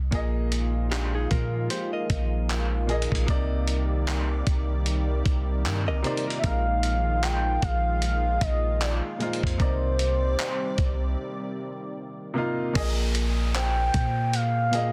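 A deep, boomy 808-style bass opens this late-night, moody contemporary R&B excerpt with a gently swung feel, joined at once by a gritty, compressed sampler-style drum kit with a thumpy kick, handclaps, hi-hat and crash, a clear baby grand piano and a lush, detuned unison pad shimmering with chorus over alternating Bb7sus4 and Cm9 chords. Clean, direct-recorded electric guitar arpeggios appear at 0.9 seconds, and from 6.4 seconds a smooth, gliding sawtooth lead carries the melody with vibrato, chorus and delay. After 12.8 seconds an electronic downlifter sweeps in, followed at 13.6 seconds by a faint, pure FM bell with tremolo, all within a dense, heavily limited mix that has little reverb.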